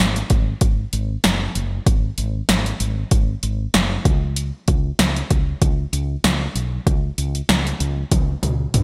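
An up-front deep house drum kit drives this urgent, dramatic 1980s-style pop fragment from 0.2 seconds. Its layered, overdriven hi-hat, kick, snare, tambourine and toms carry a deep kick, a punchy snare and gated reverb, with a lightly swung sixteenth feel and a drum fill at 8.1 seconds. Underneath from the start, a woody fretless electric bass sits low and close, dark, round and hollow-bodied, all within a bright digital production with light reverb.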